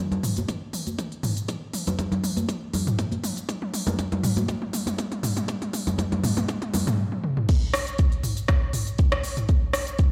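A layered deep house drum kit with smooth hi-hats, shaker, rim click, toms and crash cymbal opens alongside ringing, high-tuned acoustic congas struck with hard hands, and a deep, up-front electronic kick joins at 0.5 seconds. Drum fills drive a hypnotic build-up, the congas drop out at 6.8 seconds, and the drop lands at 7.5 seconds, all set in a spacious, hall-like reverb of this cut from a longer house track.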